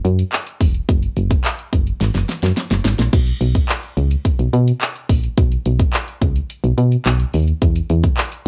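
Lightly reverberant and softly rolled off at the top, this short dance-pop cut sits at 107 BPM in a straight 4/4 with an upbeat, carefree mood, running as a drop from start to finish. A round, dark FM bass with a fast attack and decaying notes pumps with sidechain compression, sitting up front in the low register. An electronic, layered pop drum kit with a punchy kick, fat snare, metallic hi-hats, handclaps and crash cymbal carries a tape-tinged glow and pushes a drum fill from 2.0 to 3.1 seconds.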